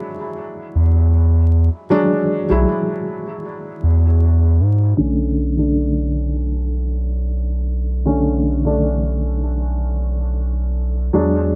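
A felt-muted upright piano opens this smoky, cinematic trip hop excerpt, its soft, mellow tone carrying audible action noise and a short sustain, shaded by harmonic tremolo and tape echo. At 0.8 s a round, deep analog bass enters, dark and sustained with a fast attack, and sits up front beneath the piano. The groove moves at an unhurried 78 BPM in 4/4, with a light 56% swing on the sixteenths and a B dorian colour. The harmony rests on E7 before shifting to Bm7 at 5.0 s, where a filter sweep begins and runs to the end. Studio reverb, vinyl crackle and a low-pass filter give the whole mix a hazy, intimate atmosphere.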